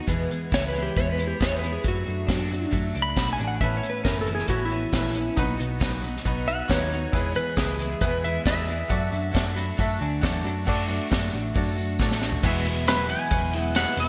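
Folk rock and heartland rock excerpt at 136 BPM in E major, with a nostalgic, warm glow: a crisp, full-bodied jumbo acoustic guitar with audible finger squeak and a clean, twangy twelve-string electric riff in the background ride over a dark, round hollow-body bass and an up-front acoustic drum kit with a punchy kick, high-tuned snare, bundle sticks and gated reverb. A dark, fingered lap steel slide line enters at 0.5 s, joined by a brilliant, worn baby grand piano with audible action noise and a jingly, close tambourine, and the piano adds a fill before the chords shift to D and a drum fill leads into the closing Eadd9. Just before the end, at 12.9 s, an up-front pedal steel takes the melody with fingerpicked slide and volume swells, all set in a lush hall reverb with a gleaming 1980s-style digital polish.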